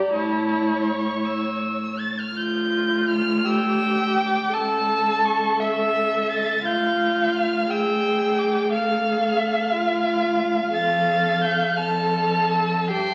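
Classical chamber music: a slow, romantic movement for string quartet in 6/8, played with free rubato and a yearning, solemn mood. One first violin carries the melody high in its range, its bowed tone rich, smooth and even, with vibrato and a close presence. Beneath it the second violin sits up front with a second line, warm and expressive, sliding between notes with portamento. A single viola fills in the accompaniment and a lone cello holds the bass, both bowed with vibrato and portamento. All four players sound for the full 13.1 seconds of this fragment, cut from a longer piece, which moves into a new section at 2.4 seconds, passes through an E7#9/D chord and closes on F. The sound is that of a very old 78 rpm record, with vinyl crackle over a wet recital-hall reverb.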